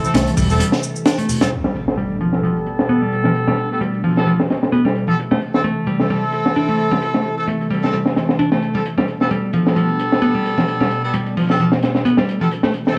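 A crunchy, saturated breakbeat kit with a punchy kick and high-tuned snare drives this energetic, funky 131 BPM breaks excerpt in G mixolydian, opening with a growly fingered bass that drops out at 0.6 seconds plus a shaker and bright congas that stop at 1.5 seconds, when an electronic impact lands and filter sweeps begin on the up-front picked bass riff and the tight, soft-attack jazz horn stabs with lo-fi sampler texture and tape echo, over a swirling, detuned sawtooth pad that pumps under phaser and chorus through Am and Gadd9.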